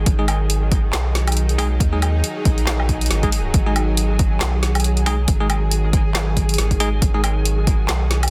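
A swung, half-time 4/4 groove drives this meditative, dark deep dubstep fragment, where a punchy electronic kick and a deep house kit of handclaps, dark hats, woody snare and woodblock sit over a round, up-front sub bass, while a tense, string-like drone holds sustained chords, a bell-like tine electric piano plays dub-echoed stabs, and a grainy, flickering texture hovers in the background of a dense, heavily limited digital ambience.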